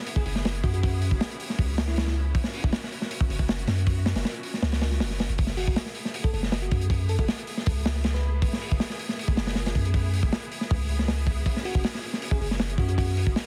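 Distant, lush bowed strings open this raw, nostalgic 158 BPM drum and bass excerpt in F# minor, joined at once by an up-front, gritty breakbeat kit with a tight kick and rolled-off top, a deep, decaying 808-style bass, and a sparkling, bell-like FM electric piano with chorus and dub echo that surfaces in the background at 0.2, 5.6 and 11.7 seconds, all through a heavily compressed radio sound in a small room.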